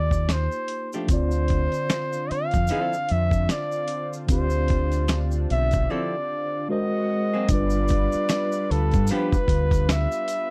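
Soulful and sultry, this brief neo-soul R&B cut has a swung groove where a warm flugelhorn with light vibrato, scooped notes and slapback echo carries the melody over mellow tine electric piano, a round, dark dub fingered bass, a gritty sampler-style drum kit with a thumpy kick, faint egg shaker and finger snaps, a clean hollow-body archtop guitar entering at 0.9 s with a second line, and a lush, airy chorused pad swelling in softly in the background from 1.1 s, all in a dry, close 1970s-style studio sound with a break at 5.9 s.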